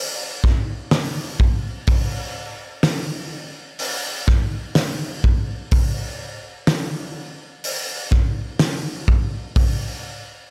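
Cinematic and soaring, this short rock excerpt at 62 BPM in a straight 4/4 features only a loose indie drum kit of hi-hat, punchy kick and fat snare, placed up front in a pumping studio room, entering at 0.4 seconds and stopping at 9.8 seconds with little reverb.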